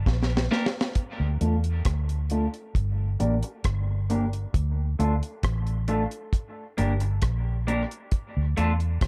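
A foam-muted, round vintage electric bass anchors this heavy, spacious dub reggae excerpt at 67 BPM in D minor, set against a dry, dark reggae drum kit with a high-tuned snare and tight kick that opens with a fill, while a slightly broken-up picked electric guitar, coloured by lush chorus, a low-pass filter sweep and dub echo, enters at 0.5 seconds over chords moving between Gm and Dm in a small room.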